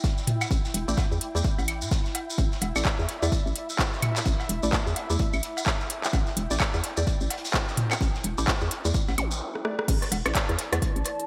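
A hollow, bouncy FM bass pumps up front through this hypnotic, sparse minimal techno excerpt at 128 BPM, swung on the 16ths, over a punchy analog kick, an overdriven techno kit of smooth hats, handclaps, rim clicks and crash, and a tape-toned organic electronic kit of claves, toms and woodblock, with a dark, gritty breakbeat kit and a grainy, distant shekere tucked in the background. Muted, detuned dub chord stabs carry phaser, delay and 12-bit sampler grit over a resonant, bubbling texture with random filter steps. A brief electronic zap just before 9.4 seconds leads into a break and drum fill, then the drop at 9.9 seconds lands on an Asus4 chord, and a warbling, nostalgic lo-fi pad enters at 10.5 seconds, all within a bright 1980s-style digital sheen.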